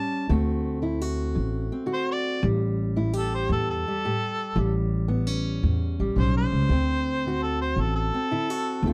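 A soulful, swaggering excerpt of acoustic country blues at 112 BPM with swung eighths opens on an up-front harmonica solo, vintage and jazz-tinged with light vibrato, tongue slaps and scooped notes, over a fingerpicked steel-string guitar with old strings and a warm, woody tone, joined at 0.3 seconds by a dark, thumpy pizzicato upright bass on gut strings, all moving from D7 to A7 and back to D7 in a dry, close 1970s-style studio sound.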